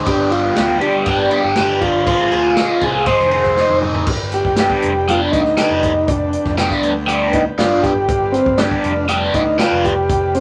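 A straight 4/4 groove at 120 BPM drives this dark, trippy psychedelic rock excerpt in G phrygian dominant, with a punchy, rolled-off vintage drum kit in a small room and a fuzzy, overdriven picked bass moving under chords of G, Fm/Ab and Ab. Up front, a double-tracked, compressed electric guitar plays an overdriven riff through a phaser until 9.9 seconds, while a very quiet, reedy pedal harmonium breathes sustained chords in a boxy space. A mellow, clean combo organ with light vibrato carries the melody from the start and, after a drum fill, moves into a solo from 4.1 seconds, all set in moderate studio reverb.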